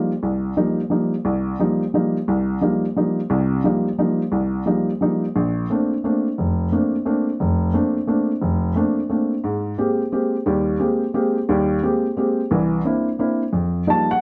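Jazz waltz in a swung 3/4, hypnotic and spiritual, carried by a solo upright piano with a woody, up-front tone, its harmony drifting from an opening F9sus4 into Bbmaj9 at 5.3 seconds, then through Abmaj9 and C9 before settling back on F9sus4 at 13.5 seconds, heard through close, detailed microphones with light reverb in this short cut from a longer piece.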